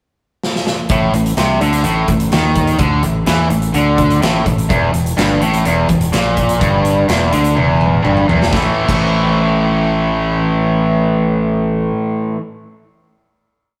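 A straight 4/4 pulse at 126 BPM drives this short, sunny and swaggering classic rock piece in A major, with a big acoustic rock kit of crash, hi-hat, punchy kick, medium-tuned snare and toms setting up a pop groove through a drum fill at 0.4 s and another at 7.6 s. Up front, a biting overdriven guitar picks a bright single-note riff, entering together with a distorted electric guitar in the background and a growling fingered bass, overdriven and driving in eighth notes, that doubles the riff as the chords move from A5 to Em7b5 before landing on a final A chord at 8.5 s. The piece sits in a moderate stone room with a rough rehearsal-room character and tube saturation.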